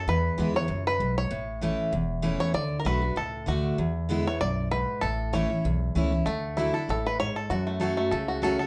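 Virtuosic and lively, this brief bluegrass passage in A major races along at 194 BPM with a light swing, as a twangy, percussive five-string banjo played with fingerpicks takes the lead solo from 0.0 to 8.7 seconds over a full-bodied, picked jumbo acoustic guitar, both up front, while a woody, dark pizzicato upright bass anchors the bottom through chords moving from E and A to D, E7, Dadd9 and F#m, all set in a moderate studio reverb.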